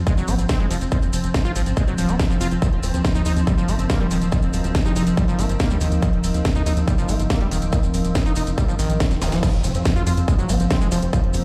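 Intense and psychedelic, this excerpt of psychedelic trance drives along at 141 BPM in a straight 4/4, built on a punchy, layered electronic kick drum up front and a tight, dark sequencer bass with a sawtooth-and-square filter pluck. Above them, a squelchy, gritty acid bass riff runs through cassette-tape saturation and tape echo, pumping against the kick, while a techno drum kit adds hi-hat, crash cymbal and a cracking snare re-recorded in a large room, with grainy maracas tucked underneath. A pulsing, tempo-synced gated texture holds sustained detuned chords, and a deep, moody ambient pad sits in the background, fading in until 9.4 seconds. A very quiet, nasal vowel-sweep wobble bass surfaces from 2.8 to 5.0 seconds and returns later. After a drum fill, the drop lands at 9.4 seconds, marked by a faint electronic zap and impact, with the chords moving between F and E-flat over a large studio reverb.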